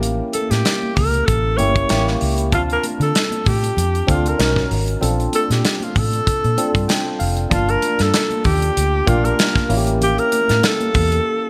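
A breathy, close-miked alto saxophone carries the melody in this bittersweet, urban 1980s jazz-funk pop excerpt, its soft-attack, scooped notes and vibrato sitting intimately up front from 0.3 seconds. Beneath it, a barky tine electric piano with analog chorus comps through a combo amp and adds a short fill at 6.6 seconds, while a dark, foam-muted fingered bass and a punchy studio drum kit drive a swung groove over chords moving from A7b9 through Dm7, Bbmaj9 and Gm9. Very quiet, bright congas sound distant in a large room, and the polished digital production closes on a break at 11.3 seconds.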